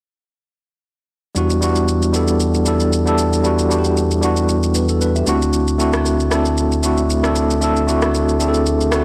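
A clean tine electric piano with medium tremolo opens this deep, soulful amapiano excerpt at 1.3 s, sitting up front with a combo-amp tone as it moves from Em7 to D7. A sustained, sine-like sub bass with an octave layer and a layered electronic shaker and rim click join at 1.4 s, carried by a lightly swung sixteenth-note feel, and the snare has a touch of soft clipping. The whole recording sounds blown-out and overdriven, with lossy compression artefacts and a light reverb.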